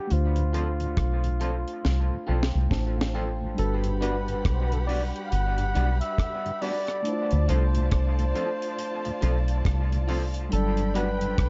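A breathy flugelhorn carries the tender, romantic melody in jazz style, with scooped notes and light vibrato soaked in tape echo, over a slow, swung lovers rock reggae groove cut from a longer piece. A deep, round, foam-muted fingered bass and a dry drum kit with a high-tuned snare and tight kick sit up front, while a mellow tine electric piano with dub echo adds a fill alongside the drums from 1.8 seconds. A very quiet tonewheel organ turns slowly through a rotary speaker, a bright, twangy guitar from a small old amp picks slightly broken-up stabs with harmonic tremolo, and a lush, dark bowed violin section joins at 3.6 seconds, all wrapped in a small room's warm, dusky ambience.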